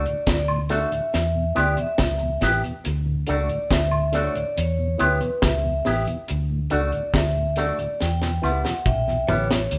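A ringing, metallic vibraphone carries the melody from the first moment of this uplifting roots reggae passage, its medium hard mallets giving a dark, smooth tone with the motor off. Underneath, a bright, twangy electric guitar picks clean, compressed accompaniment through an envelope filter, while a vintage fingered bass sits up front with a round, punchy, foam-muted sound. A mellow tonewheel organ enters at 0.1 seconds, lightly overdriven and shimmering with chorus vibrato and a slow rotary speaker, joined by a deep, dry acoustic drum kit with a high-tuned snare, a tight kick and tape echo. Woodblock and tambourine add a small-room sparkle from 0.5 seconds as the harmony alternates between D and E minor. A drum fill arrives at 8.0 seconds, and the whole band shares a moderate stone-room reverb, sounding as if it is playing live together in one space in this brief cut from a longer piece.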